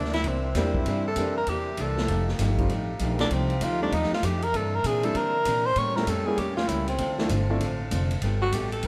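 Joyful and swinging, this short cut from a longer big band swing number puts a tenor saxophone solo up front, its warm tone shaped by light vibrato, scooped notes and a smooth top. Behind it, a tight saxophone section holds clear sustained chords in the background, while a vintage hollow-body electric guitar adds dark, clean picked accompaniment. An upright bass plucks a woody, growly line, and a distant, roomy drum kit swings on hi-hat and ride with shadowy cymbals, a medium-tuned snare and a boomy kick. A baby grand piano with a natural, short-sustain sound enters at 0.6 seconds and drops out at 7.6 seconds. The harmony moves from C9 to F9 and back to C9, then through A7b9 and Dm7 to G9, all set in a moderate large-studio reverb.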